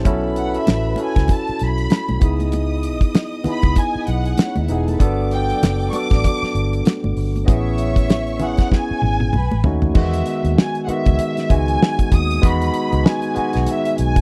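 Romantic and lush, this fragment of a longer piece is 1970s-style soul with a gently swung sixteenth-note feel. A dry, up-front drum kit with a fat snare, tight kick and dark cymbals drives the groove alongside a round, foam-muted fingered electric bass, while bright congas with hard hands sit in the background. A barky tine electric piano, lightly overdriven through a combo amp with subtle chorus, carries the accompaniment, and a close, woody string section adds a second line until 9.6 seconds. From 0.4 seconds a distant, darker violin section sings the melody with vibrato, treated with tape echo. The harmony moves through lush seventh chords, and a drum fill from 8.7 seconds leads to an Emaj7 arrival at 10.0 seconds, where the congas drop away for the closing section.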